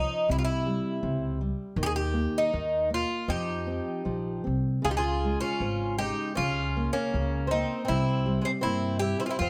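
This fado-style ballad, a short excerpt in 2/4 with a rubato feel, carries a longing, mournful mood, led by an up-front Irish bouzouki whose picked double strings ring with a metallic edge. Beneath it, a dark, classical nylon-string guitar plays fingerpicked accompaniment with audible finger squeak, while an up-front upright bass adds woody pizzicato on steel strings. At 3.3 s a twelve-string acoustic guitar joins with a boxy, shimmering, octave-doubled second line that swings, all captured by close, detailed microphones in light reverb.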